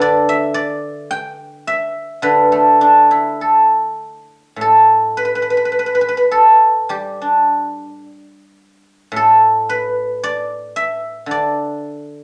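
A solo guzheng, plucked with fingerpicks, sounds up front from the start, its silvery, ringing tone spanning A2 to G5 in a pastoral, flowing Chinese traditional excerpt with a free, rubato feel. Around 4.6 seconds the music moves into a new section that carries on to the close at 12.2 seconds. A large studio reverb adds a generous wash of space around the acoustic strings.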